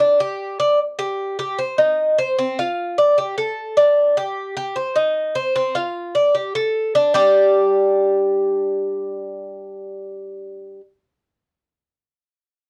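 Sultry and nostalgic, this short Latin excerpt features a solo Cuban tres playing alone throughout its 10.8 seconds, its picked, metallic double strings with some octave-doubled courses sitting up front in a modest studio room and carrying the character of a home cassette recording as the harmony moves through suspended and minor chords before returning to G5 at 7.1 seconds.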